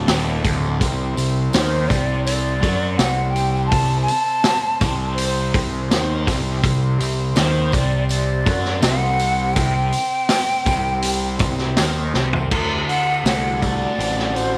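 Hypnotic and dark, this psychedelic rock excerpt moves at 82 BPM in a straight 4/4, cut from a longer piece. A dark, double-tracked fuzz guitar riff with distortion and phaser runs throughout, joined by a punchy, overdriven fuzz bass sitting up front, while a buzzy vintage combo organ holds very quiet sustained chords beneath them. An acoustic vintage drum kit with dark cymbals, a punchy kick and a rolled-off top drives the groove alongside a jingly, close and dry tambourine kept very low in the mix. From 1.5 seconds a breathy concert flute carries the melody with vibrato and tongued, expressive phrasing, its lifted highs trailed by a slapback echo. The chords shift from D5 to C5 early on, and a drum fill at 12.2 seconds leads into a new section built on D7 at 12.5 seconds, all set in a light reverb.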